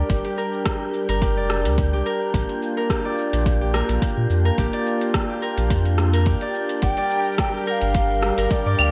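Organic downtempo in G minor pentatonic at 107 BPM with a light sixteenth-note swing, this warm, meditative excerpt sets a fingerpicked, ringing Celtic harp arpeggiating through filtered delay over a smooth sawtooth pad with chorus and sidechain pumping, a round sine sub bass, a breathy wind-like noise layer in the background, and an overdriven deep house kit of claves, metallic hats, rim click and shaker with gated reverb beside a deep electronic kick, all moving through Gm7 and Bb until an airy, close-miked bansuri enters at 6.8 seconds with vibrato and digital delay, framed by a plate reverb and bright 1980s-style digital production.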